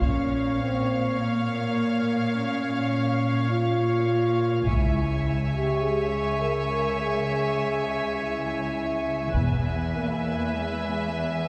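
Dark and relentless, this cinematic orchestral film score cue moves at 103 BPM in a straight 4/4, cut from a longer piece and tuned to A4 = 439 Hz. Mellow French horns hold sustained chords through the whole 11.5 seconds, while a rich, lush cello section sits up front on the bass line, bowed smoothly with vibrato. Above them, a distant violin section carries the melody in the background, joined by a clear, intense second violin line and a chamber-sized viola section filling in the accompaniment. A bowed double bass section and a close, dry taiko ensemble struck with hard sticks enter together in short bursts at 0.0, 4.7 and 9.3 seconds, marking the harmony's shifts from Bb minor to Db minor and finally to E. The ensemble is heard from further back in a scoring-stage reverb with a 1.6-second tail, lending the strings and horns a grand, spacious depth.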